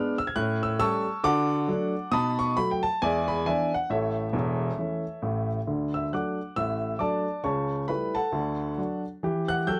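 A clear upright piano carries this short solo excerpt of stride jazz, playing alone from 0.0 to 9.8 seconds in a swinging, playful mood at 135 BPM in 4/4 with a 60% swing on the eighth notes. The instrument sounds woody and intimate, sitting up front with a polished, present tone, long sustain and audible action noise that brings the listener close to the keys. Its range stretches from E1 in the bass up to G#6, and the music stays in D major with the tuning set slightly high at A4 = 441 Hz. The harmony moves through A7, D, B7, E7 and A in the opening passage, then shifts at 5.7 seconds into a new section that runs D, A7/C#, D and Em. Close, detailed microphones and a light reverb keep the sound crisp, and the fragment is cut from a longer piece.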